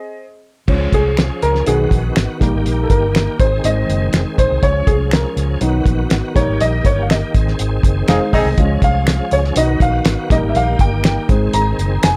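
A worn, woody upright piano, slightly detuned and up front, takes the lead in this joyful, uptempo 1960s-style soul excerpt, opening alone before carrying a solo from 0.7 seconds onward. Beneath it, a bright, shouting tonewheel organ holds sustained chords through a fast rotary speaker with light overdrive and chorus vibrato, while a round, foam-muted electric bass and a cloth-damped, thuddy drum kit with a fat snare, tight kick and dark cymbals anchor the groove alongside close finger snaps. A band accent arrives at 6.6 seconds, where a mellow, tight horn section adds a brief line with light vibrato at 8.1 seconds.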